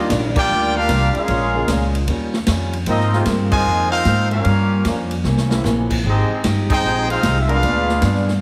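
A clear, vibrato-laden trumpet section leads an energetic Eb major big band swing passage at 151 BPM, with a nasal straight-muted trombone section on a second line, a soft-attack trombone section holding chords in the background, and a woody, thumpy pizzicato upright bass up front. A boxy parlour steel-string acoustic guitar picks an accompaniment behind them while a swinging big-band kit with a boomy kick drives the groove, adding a drum fill at 5.2 seconds between band accents at 0.3, 3.5 and 6.6 seconds. Rich jazz harmony moves from Ebmaj9 through Ab69 and C7b9 to Bb7b9 in this short cut from a longer piece, set in a moderate recital hall reverb with a heavily compressed radio sound.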